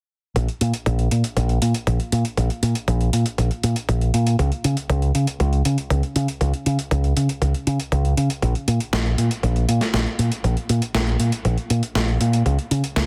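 Dry and squeezed into a heavily compressed radio sound, this nostalgic, danceable italo disco excerpt in Bb minor moves at 119 BPM in a straight 4/4, with a bright, up-front fingered electric bass running through an envelope filter between Bb1 and Db3, while a dusty soul sampler-style kit of hi-hat and medium-tuned snare and a thumpy electronic kick drum, both gritty and overdriven, play together from 0.4 to 13.1 seconds.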